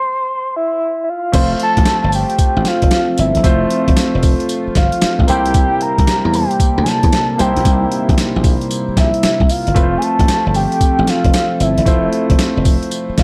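New jack swing R&B at 114 BPM with a punchy, slick, swung feel, where a soft, round octave-layered synth lead with chorus and tremolo carries the melody alone until the band enters at 1.3 seconds: gritty, compressed, pitched-down boom bap drums with a thumpy kick, tambourine and crash sitting up front, a bright, foam-muted thumbed slap bass, a clear, polished baby grand piano, and a shimmering, retro pulse-width pad humming in the background over Fmaj7 and C7 chords, all in a dark production with light reverb.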